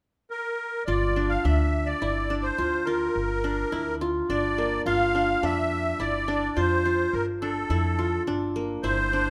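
A reedy, shimmering musette accordion opens this restless, urgent contemporary chamber piece at 0.3 s, carrying the melody in G dorian. At 0.9 s the bright-edged, plectrum-plucked qanun enters with arpeggios over a Gm7 chord, joined by a woody pizzicato upright bass, all three up front at 106 BPM in an uneven 7/4. Light reverb frames this short cut from a longer piece.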